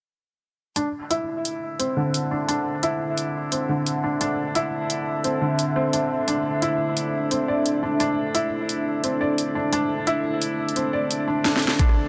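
A half-time drum and bass groove at 174 BPM in 4/4 carries a light 16th-note swing through this tense, dark fragment of a longer piece, with the parts arriving together at 0.8 seconds over a D5 chord. An overdriven drum kit sits up front, its cracking snare, bright hi-hats and rim clicks sounding layered and produced, as though re-recorded in a small room. A felt-muted upright piano plays soft, intimate arpeggios with audible action noise, dub echo and a low-pass filter sweep shaping its mellow tone. Alongside it, a deep, moody analog pad holds sustained chords, its detuned sawtooth and sub-octave layers rising on a slow attack, thickened by chorus and pumping from sidechain compression. A drum fill arrives at 11.4 seconds, and an overdriven, knocking electronic kick drops in at 11.8 seconds, while a huge ambient reverb and dark production give the whole passage a brooding sense of space.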